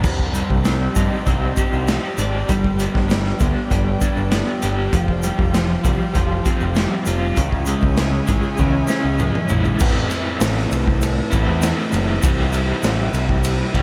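Psychedelic rock at 98 BPM with a hypnotic, mysterious mood, this excerpt puts a crunchy, bright, double-tracked guitar riff with tremolo up front, joined by a growling, overdriven picked bass, against a gritty, dark garage drum kit with a punchy kick, while lush bowed strings hold sustained chords and a grainy egg shaker sits in the background of a small room with light reverb, and a drum fill from 8.6 to 9.8 seconds leads into a new section.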